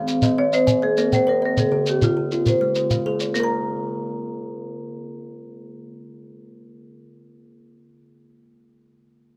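Warm and rippling, this short cut from a longer southern African traditional piece moves in a straight 12/8 mbira-style interlocking cycle, with two woody, ringing kalimbas weaving arpeggios throughout, one mellow and soft under a fingertip pluck, the other thumb-plucked. A close, grainy shekere sits up front until about 3.5 seconds, while a vintage, band-limited marimba struck with medium hard mallets carries the melody from 0.4 seconds. Light reverb surrounds the ensemble as the chords move through Cm, Bbm, Db and Ab before the second section drops the harmony at 3.4 seconds.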